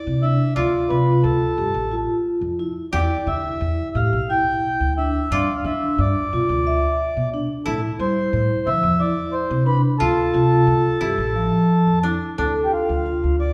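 A reedy, boxy accordion carries the melody from the very start, joined at once by a koto played with fingerpicks on a dry second line, while a growly, woody pizzicato upright bass and an airy, ringing vibraphone with soft mallets and motor vibrato fill out this restless, pensive contemporary chamber piece in 7/8 at 178 BPM, counted in eighths. The harmony moves through Am, Dm, Em7 and G, comes back around to Am and Dm, and then turns to Dmadd9 at 12.4 seconds, with the accordion and bass sitting up front in a reverberant recital hall that has a 1.7-second decay. Tuned to A4 = 438 Hz, the passage is cut from a longer piece.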